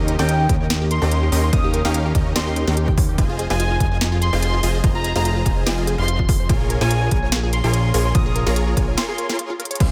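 Lush and emotional, this future bass passage moves at 145 BPM in 4/4 with a half-time feel and a light swing on the sixteenths, cycling through Eb7, Fm7 and Bbm7 chords. A fat, thick analog bass sits up front with a detuned sawtooth tone and filter sweeps, pumping under sidechain alongside a punchy supersaw stab riff that ranges from Db4 to C6. In the background, a detuned unison pluck spins short-decaying arpeggios through a tape echo, while an airy, dreamy lead carries the melody high between G5 and Eb6, its soft sine-and-noise tone coloured by chorus, vibrato, delay and a cassette-tape character. Underneath, an overdriven, layered electronic kick re-recorded in a large room joins at 0.5 seconds, and a trap kit adds a sharp snare, crisp hi-hats and crash cymbal. A break arrives at 9.0 seconds with a drum fill at 9.6 seconds, all set in a digital ambience in this clip from a longer piece.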